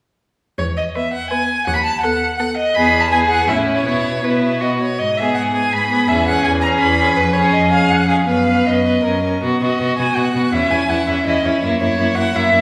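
The quartet sounds from a reverberant church or concert hall, its 1.4-second tail surrounding four bowed strings that each carry a rich, vibrato-laden tone. This quick classical-period movement in 3/4 is spirited and graceful, running at 164 BPM with a rubato feel, beginning in E major and moving to B major from 5.0 seconds. The first violin carries the melody up front with a focused yet distant sound, while the cello supplies a smooth, even bass line that also sits somewhat back in the hall. At 1.0 seconds the second violin enters with a supporting line and a silky top, and the viola adds a steady accompaniment beneath it. Passing through chords such as G#m, C#m7/E and F#7 as it heads into a new section, the passage is cut from a longer piece.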